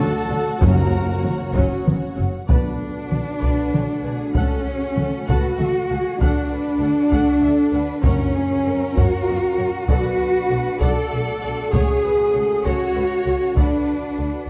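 Epic and relentless, this cinematic orchestral cue in a rolling 6/8 places a dry, hard-stick taiko ensemble up front from 0.6 s, with timpani on medium mallets joining in two spans and a solo trumpet adding brief stabs only in the opening 1.5 s. A mellow, punchy French horn section holds sustained chords over a focused cello section and a woody double bass section carrying the bass, while lush bowed strings sit in the background: violins with vibrato sing the melody and a smooth second line, a dark, distant viola section supplies accompaniment, and a studio string section sustains chords. A scoring-stage reverb wraps the whole cue in a dusky, spacious sheen, and the passage is cut from a longer piece.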